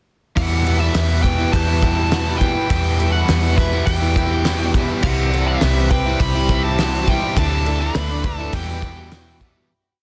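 A fuzz-soaked lead guitar carries the motif-based melody of this short, complete shoegaze and dream pop piece, its compressed, distorted tone trailed by digital delay over a brooding, dreamy chorus. Up front, a vintage foam-muted electric bass plays a round, dotted figure alongside a loose indie drum kit with a punchy kick, fat snare and dark cymbals in a pumping studio room, driving a big rock groove in straight 4/4. Behind them sits a thick bank of guitars: an overdriven semi-hollow strums hollow-bodied chords through lush chorus, a bright double-tracked overdriven electric rings out, and a slightly broken-up, lo-fi guitar through a small old amp strums under reverse reverb. A boxy twelve-string acoustic picks a shimmering, octave-doubled ostinato with a swing feel, coloured by analog chorus and digital delay, while a very soft, detuned analog pad holds slow-attack chords beneath it all. 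The harmony moves from Em through Cmaj7 and Dsus2 to Emadd9, and the whole dense, heavily limited mix fades out from 7.4 to 9.7 seconds.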